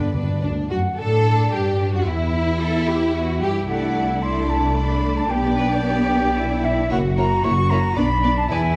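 A quick classical-period orchestral movement in triple metre, cheerful and graceful, with a rubato feel and the reverb of a recital hall. A close, dry timpani fill on medium mallets opens at 0.0 s alongside cellos, violas and a background violin line, then at 0.4 s a second, lush violin section takes the melody while an airy, crisp-attacked flute group adds a straight-toned counterline above. Expressive violas with portamento fill the middle, a smooth, distant cello section and an up-front, focused double bass section anchor the low end, and the timpani stops at 1.2 s.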